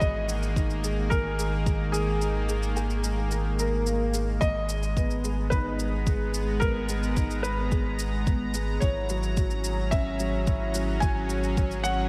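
Soaked in a dreamy hall reverb, this hypnotic, moving piece of piano and strings electronica opens on a soft, felt-muted upright piano carrying the melody, with audible action noise and a diffuse ambient delay, over a dark, woody second upright piano riff treated with analog chorus and the same delay. A thick, warbling, detuned unison pad holds sustained chords with chorus and sidechain pumping, while a round sine sub bass sits up front and pumps along with it. A deep, tape-toned electronic kick drops out between 2.2 and 4.4 seconds before returning under a quiet layered shaker, in this short section cut from a longer piece.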